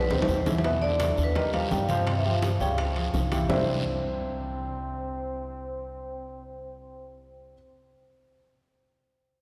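A ringing vibraphone played with medium hard mallets, motor off, carries the melody in this lively, sophisticated Afro-Cuban jazz excerpt over a dark, mellow baby grand piano with audible action noise, a woody, thumpy pizzicato upright bass up front and a growling, gritty trombone second line with scooped notes, while very quiet low-tuned congas, tight high-tuned bongos, metal-shell timbales in the background and a raspy guiro play until 3.6 s, the whole performance ringing out in a reverberant church space.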